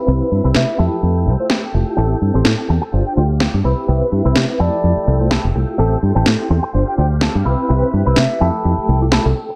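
Bathed in light digital ambience and a filter sweep that runs through the whole clip, this feel-good, joyful slice of filtered disco house puts a punchy, tube-saturated fingered electric bass and a cracking, layered electronic snare up front, while a reedy electric piano shimmers with fast tremolo and phaser, a dark, compressed envelope-filtered guitar plays a riff gritty with vintage 12-bit sampler texture, a swirling, warbling string machine holds sustained chords in the background, and a breathy silver concert flute, unsteady and touched with vibrato, carries the melody from 0.5 seconds.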